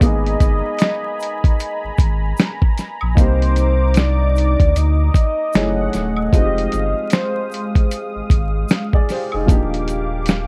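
Lo-fi hip hop in a mellow, nostalgic mood, cut from a longer piece, where a velvety synth lead with chorus and analog delay carries the melody until 8.3 seconds over woody upright piano, a smooth detuned analog pad, a deep sine-and-triangle sub bass with octave, a compressed, muffled sampler-style drum kit with a thumpy kick up front, a background tube shaker and woodblock, and a bed of vinyl crackle, with the chords moving from Abmadd9 through Cm9, Gbm7 and Fm7 to Ebmaj9.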